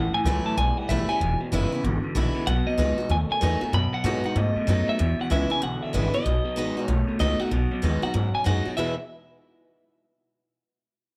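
A swung 190 BPM groove in 4/4 drives this upbeat, retro rock fragment in E major, cut from a longer piece, with a woody, thumpy upright bass sitting up front on gut strings. A bright, twangy clean electric guitar carries the melody high in its range, colored by warbly pitch drift and tape echo, while a boxy parlour-style steel-string acoustic picks out the accompaniment in plate reverb and a slightly broken-up electric guitar through a small old amp plays a riff through a phaser. The chords move between A, E and B under light room reverb, and the parts play together throughout, stopping near 9.0 seconds as the harmony settles on E at 8.8 seconds.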